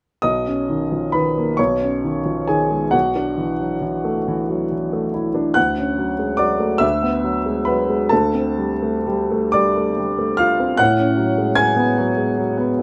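Impressionist classical solo piano, serene and luminous, drifts in rubato 6/8 at a slow 40-52 BPM as a clear, intimate grand piano with long sustain and audible action noise sits up front in a moderate stone-room reverb, moving through rich extended harmonies from Bmaj9 to a closing A69 in this short fragment of a longer piece.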